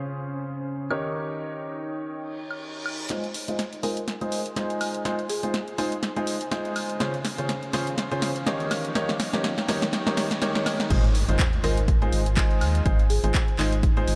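A clear, polished grand piano sits up front playing the riff of this feel-good, uplifting piano house excerpt, pumping against the sidechain and trailing a diffuse ambient delay while a low-pass filter sweeps over it through the build-up. Alongside it, a warbly, nostalgic pad of detuned sawtooth and triangle tones lingers in the background with chorus and a lo-fi, vintage haze. A punchy analog drum machine enters at 0.9 seconds with handclaps, hi-hat, snare, woodblock and crash cymbal, tape-tinged and close, its snare, clap and hats carrying a short room, and a drum fill runs through the build. A woody marimba with a buzzing edge and medium mallets floats a dry, smooth melody in the background, while very quiet electronic effects, including a reverse cymbal, riser, swell and sub drop, lead into the drop at 10.9 seconds. There a punchy analog kick and a hollow, dark, organ-like FM bass with a fast, decaying attack arrive together, the bass pumping under the sidechain, all inside a huge ambient reverb over a lightly swung groove.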